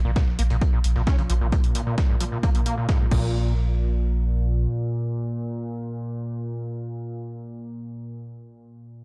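Hypnotic and dark, this driving peak-time techno excerpt runs at 132 BPM in a straight 4/4, with a punchy analog kick and a deep, thick saturated sub bass up front, joined by layered techno hats and crash plus a gritty, fat-snared sampler-style kit sitting in the background, with the sub bass and the sampler kit's hats pumping to the sidechain. A squelchy, screaming sawtooth acid riff with distortion, chorus and dub echo rides a resonant filter sweep from the start until 3.3 seconds; the drums drop away by 3.2 seconds and the acid by 3.5 seconds. The sub bass holds until 4.7 seconds, while a moody, detuned ambient pad drone carries on until 7.8 seconds in a dark production with light digital reverb.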